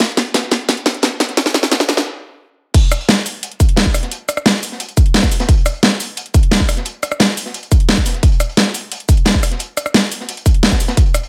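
A small room surrounds this dark, tense drum and bass drum track, cut from a longer piece, with a punchy electronic kick and a tape-warm dubstep kit sitting up front. That kit brings a huge snare, metallic hi-hats, cabasa, rim clicks and crash cymbal, while a gritty, saturated acoustic breakbeat kit with a medium-tuned snare and a rolled-off top sits in the background. A drum fill builds until 2.1 seconds, the drums stop briefly, and at 2.7 seconds the full layered groove drops in for the rest of the clip.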